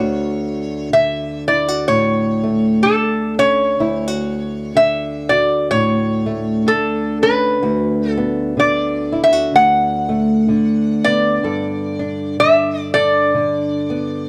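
Nostalgic and hopeful, this slow acoustic folk excerpt at 63 BPM in D major sets a metallic, nasal lap resonator guitar, played with slide and fingerpicks, carrying the melody up front over a small, fingerpicked nylon-string guitar whose audible finger squeak sits close in the light reverb as the chords move from Dmaj7 to Bm7/D at 7.6 seconds and Gadd9 at 11.4 seconds, all with a gentle swing.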